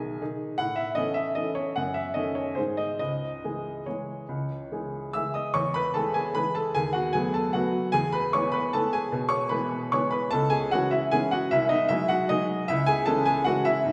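Wistful and elegant, this brief classical piano waltz in 3/4 is a solo for clear, woody upright piano that sways with rubato between 136 and 163 BPM, moving from C# minor to E major at 5.6 s and back toward C# minor, spanning a range from B1 to E6 with an open, up-front sound set in the wet reverb of a church, cut from a longer piece.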